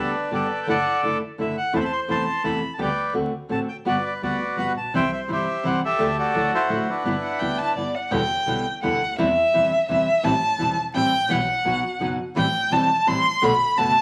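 This elegant, nostalgic tango in three opens with a reedy, up-front bandoneon carrying the melody over fingerpicked nylon-string guitar and a bowed double bass, all moving with a loose, rubato feel. The guitar sounds bright and deep in a classical manner, with audible finger squeaks. Beneath it, the intimate, close-miked bass plays sul tasto with an airy bow and light vibrato. A violin enters at 7.2 s, and the bandoneon falls away at 7.7 s. From 8.1 s the violin takes a solo in a darker minor passage, singing with a gentle attack, vibrato and expressive portamento. The whole excerpt sits in a lush studio reverb with a layer of vinyl crackle, as if lifted from a longer piece.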